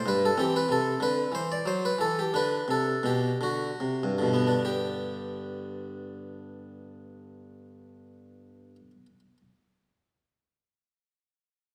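Dance-like and flowing, this brief baroque-style suite movement in a lilting 6/8 is played by a solo harpsichord, its plucked, round French-style tone on a single set of strings heard up front and ranging from G2 to D5. The rubato phrasing slows through the opening 4.6 seconds as the harmony moves from C through Em11 and Am11, arriving on G as a second section begins. A generous recital-hall reverb surrounds the instrument in this short passage cut from a longer piece.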